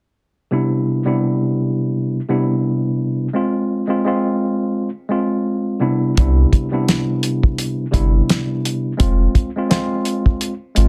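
A worn, slightly out-of-tune tine electric piano opens this boom-bap hip-hop excerpt at 85 BPM in C major, lightly overdriven with a cassette-tape tint and filtered top and bottom, moving between Cmaj9 and Fm chords with a confident, nostalgic mood. At 6.2 seconds a deep, round sine sub bass and a dry, dark, cloth-damped drum kit enter up front, the fat snare and tight kick joined by hi-hat over a gently swung sixteenth feel. Light reverb and a dense, heavily limited modern master hold the sound close and full.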